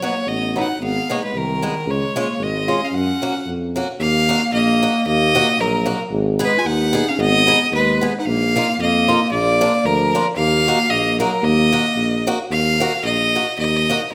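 A moderate recital-hall reverb frames this bouncy, festive alpine dance band clip at 112 BPM in a lightly swung 2/4, moving from F# major into Eb minor at 4.0 s. From the start, a clear, airy-bowed fiddle sings the up-front melody with light vibrato, a dark, smooth-topped clarinet carries a second line until 12.3 s, and a bright, fresh-stringed acoustic guitar picks a swing accompaniment, while a roomy tuba enters at 0.3 s with a gentle vibrato on the bass.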